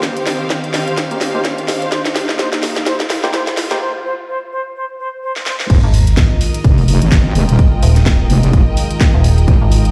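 This aggressive, bouncy bass house excerpt opens on a bright, evolving sawtooth pad and lush bowed strings alongside a punchy, layered kick and a garage kit with a cracking snare, hi-hat and crash that build through drum fills, while a background riser, a distant, pure silver flute and a hollow, percussive organ stab with delay float over the filter-swept build-up. After a short break, the drop lands at 5.7 seconds with an impact and sub drop as a heavy, detuned wobble bass and a metallic, overdriven FM bass arrive up front, both with sidechain pumping. The mix is played on a big sound system in a bare room with large studio reverb.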